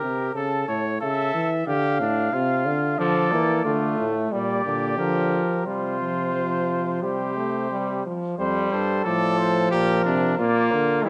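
A straight, even 4/4 pulse carries this stately, elegant classical canzona for brass ensemble, an imitative piece heard as a short cut from a longer work. A mellow cornet with vibrato sings the melody from a distant, roomy position, while a soft-attacked trumpet sits up front on the second line. Beneath them, a warm euphonium with vibrato holds the bass with a present, forward tone. At 3.0 s a bright trombone with light vibrato enters as accompaniment, adding a bright edge to the middle of the texture. A new section begins at 8.4 s, and the playing is framed by close, detailed microphones and a moderate recital hall reverb.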